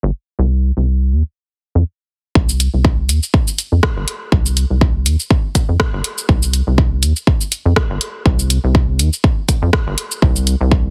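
A rubbery, hollow square-wave bass anchors this minimal techno excerpt, its dark, resonant filter pluck pumping against a sidechain and sitting up front from the very start. It plays alone at first, and after a brief stop at 1.9 seconds the drop arrives at 2.4 seconds with a layered, punchy electronic kick carrying a tape-warm tone and a touch of small-room ambience. A moment later, at 2.5 seconds, a dry, overdriven analog drum machine adds hi-hat, rim click and shaker, set a little lower in the mix. The groove moves at 122 BPM in 4/4 with a light swing on the sixteenths, in C minor, giving a hypnotic, sparse mood. The sound is close and largely free of reverb, squeezed by heavy multiband compression into a dense, radio-like finish.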